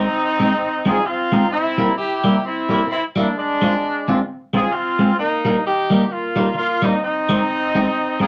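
A swung 4/4 ska groove at 131 BPM drives this bouncy, cheerful fragment of a longer piece, where a punchy, vintage horn section with vibrato and tube saturation carries the melody up front while a twangy, slightly broken-up electric guitar through a phaser plays accompaniment over chords moving from Ab through C7, Fm and Eb back to Ab, the two parts sitting in a short, wet club reverb and tuned to A4 = 438 Hz.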